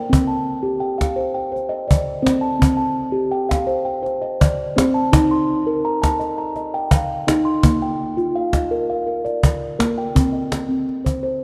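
Hypnotic and meditative, this cut from a longer world piece sets a round, pure, ringing steel tongue drum, struck with rubber mallets and playing arpeggios from Bb3 to C6, over a snappy, snare-equipped acoustic cajon played with hard hands, both up front in a straight 7/8 at 167 BPM counted in eighths, moving through Cm, Eb and Bb in C dorian before returning to Cm at 10.2 seconds, all bathed in a wet church reverb and the character of cassette tape.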